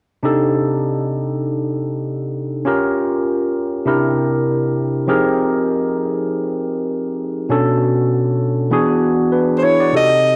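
Pop fragment at 99 BPM with a nocturnal, slick mood and lightly swung sixteenths, where a barky, gritty overdriven tine electric piano with subtle chorus plays accompaniment up front through a combo amp from 0.2 seconds over minor-ninth, half-diminished and dominant chords, joined by a breathy, whispered soprano saxophone that enters at 9.6 seconds with scooped, vibrato-laden jazz phrasing, all set in a moderate echo chamber reverb with small room ambience.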